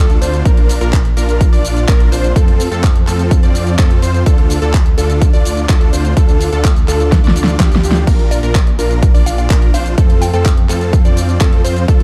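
A straight 4/4 groove drives this emotional, anthemic festival progressive house excerpt, built on a punchy, overdriven electronic kick that sits up front from 0.5 s. Alongside it, a layered pop kit with a fat snare, handclaps, hi-hat, shaker and crash carries its own overdrive and small-room character, and it breaks into a drum fill at 7.1 s. Underneath, a thick, lush detuned saw bass, saturated and treated with chorus, pumps against the sidechain through a Bb, F and Dm progression. A huge, euphoric supersaw riff, bright and compressed, shares the top with catchy arpeggios from a full-bodied plucky unison lead carrying a sub octave, a noise layer and a filter sweep, and both leads pump and trail tape echo. From 8.3 s, a woody, round, FM mallet-like pluck adds a brief melody in the background, colored by chorus, phaser and tape echo, all within a dark production wrapped in digital ambience.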